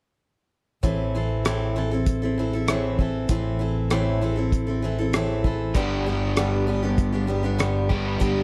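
A straight 4/4 pulse from a dry, cloth-damped drum kit with a tight, thuddy kick, hi-hat and rim click starts at 0.8 seconds in this dusty, wistful folk rock and heartland rock excerpt, together with a bright, full-bodied picked jumbo steel-string acoustic guitar up front with audible finger squeak and a round, dark, amped fingered electric bass over Am, moving to G at 5.8 seconds, while a crunchy, double-tracked overdriven electric guitar riff enters up front at 5.7 seconds, all in a small room with light reverb and lossy compression artefacts.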